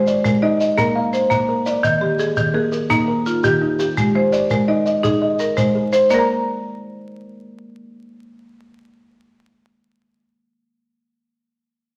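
Warm and rippling, this portion of a longer southern African traditional piece spins an mbira-style interlocking cycle in a straight 12/8 at 113 BPM, as an up-front, woody marimba struck with hard mallets and a dark, buzzing, thumbnail-plucked kalimba weave arpeggios over Ab, Bb and Eb, while a grainy, close shekere plays until 6.3 seconds, the whole set in a wet large-studio reverb with vinyl crackle.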